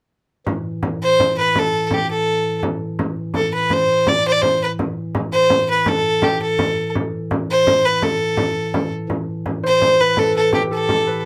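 A soft, hollow stopped-flute pipe organ drone with a gentle chiff and a deep frame drum open this mysterious, driving medieval dance in A minor at 0.5 seconds, moving at 111 BPM in a straight 6/8. A rich, earthy fiddle played by a single player enters up front at 1.0 seconds with light vibrato and an airy bow, carrying the melody in a close, bowed voice. At 9.6 seconds a mellow, ringing fingerpicked concert harp adds a second line in the background, all set in a small, moderately reverberant room in this short cut from a longer piece.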